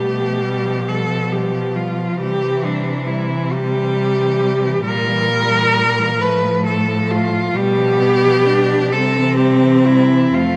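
Tender and lyrical, this classical passage for four cellos moves at a slow 44 BPM in 6/8, counted in dotted quarters, with a rubato feel in C major, and it is a short section cut from a longer piece. A clear, smooth cello carries the melody up front while a rich second line sits in the background. A focused accompanying cello fills the middle, and a close, expressive bass cello plays with soft attacks and portamento; each part is bowed with vibrato as the harmony moves from G7/B to C, through Edim/Bb and F/A, then G7/B back to C, heard in the wet reverb of a scoring stage.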